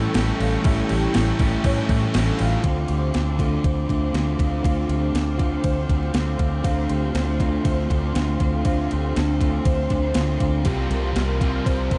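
Shoegaze and dream-pop rock in D minor at 120 BPM, this brooding, dreamy cut from a longer piece moves in a straight 4/4 from an A7 opening to a long stretch on Dm7, then turns to C7sus4 at 10.7 s. A clean 12-bit drum machine, overdriven and up front, brings in a thumpy kick, medium-tuned snare, ride and crash from 0.1 s, while a foam-muted vintage fingered bass sits equally forward with a dark, round tone. Three guitar riffs stack in the low-middle register: a thick fuzz guitar thickened by ensemble chorus, a twangy, slightly broken-up guitar through a small old amp bathed in reverse reverb, and a bright, scooped, double-tracked distorted guitar that plays only until 2.6 s and returns at 10.7 s. Behind them, a boxy parlour twelve-string fingerpicks shimmering, octave-doubled arpeggios with audible finger squeak, subtle chorus and slapback echo, while a detuned sawtooth pad holds smooth, soft-attack chords with chorus above it all. 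The production is dark and warm in character, with a light reverb and its top end kept under 10.3 kHz.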